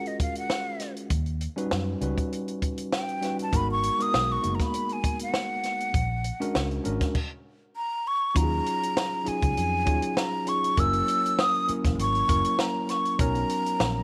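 A gently swung 16th-note groove at 99 BPM in 4/4 drives this bittersweet, cinematic slice of lush 1970s-style soul in Eb minor, cut from a longer piece. A compact cocktail drum kit sits up front with a punchy kick, high-tuned snare, hi-hat and dark crash cymbals in a tight booth sound, while a vintage fingered electric bass arrives at 1.1 seconds with a round, foam-muted, amped tone. A worn, slightly out-of-tune tine electric piano supplies mellow, clean accompaniment over rich chords such as Gbmaj9, Eb7alt, Abm9 and Bb7alt. A breathy, hollow metal jazz flute carries the melody as a solo with vibrato, a soft attack and lifted highs, and the band hits a stop from 7.2 seconds before a new section opens at 8.4 seconds on Ebm11, moving through Gb7 to Bmaj9. Light reverb and studio ambience lend the mix a gentle sense of space.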